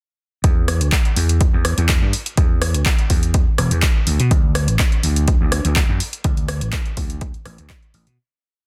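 A four-on-the-floor electronic kick, overdriven and up front, drives this sensual, funky filtered disco house groove at 124 BPM with a light 16th-note swing. A punchy analog drum machine adds programmed claps, rim clicks and open and closed hats, its hats sidechain pumping. Both drum parts are overdriven and re-recorded in a large room. From 0.4 seconds, a growly, amped vintage slap bass plays a syncopated line, pumping and low-pass filtered under a sweep that runs throughout. With little reverb and a dense, heavily limited master, the whole piece fades out from 5.6 seconds, and the kick drops away at 7.8 seconds.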